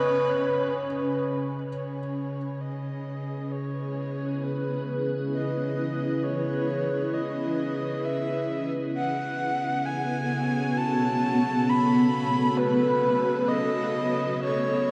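This ambient piece in free time sits in C# minor and feels melancholic and spacious, like a fragment of a longer work. From the start, a felt-muted upright piano plays very quiet, dark arpeggios, its action noise audible through the thick felt, and it stops at 2.0 seconds. A breathy, flute-like synth lead carries the melody between B4 and B5, sitting up front with vibrato, lush chorus and delay, and it fades in from 1.7 seconds. Beneath it, a granular cloud pad holds cloudy, blurred, full-bodied chords with a slow attack and long release. An analog drone anchors everything on a low C#3 with an evolving sawtooth and pulse-wave tone under chorus. The harmony moves from G#m over C# to C#m9 and then to B9 at 8.9 seconds, all bathed in a huge reverb with a 7.4-second tail that suggests a vast, echoing space, with a cassette-tape grain over the whole sound.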